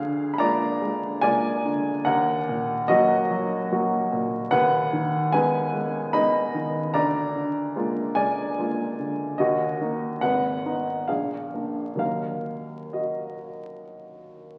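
A warm baby grand piano carries this brief romantic character piece alone, sounding present and up front as it moves through a brooding, passionate passage in E-flat minor. The tempo sits loosely between 63 and 75 BPM in a flowing 3/4, shaped by generous rubato that lets each phrase breathe. Its harmony circles through dominant and subdominant colors, with Bb7/D, Ebm and Abm returning before the music settles on Ebm at 12.0 seconds. The piano spans from low Ab1 up to Cb6, giving the brief passage both a dark bass foundation and a reach into the upper register. A wet concert hall reverb surrounds the playing, while the crackle of a very old 78 rpm record lends an aged, nostalgic patina to this short cut from a longer work.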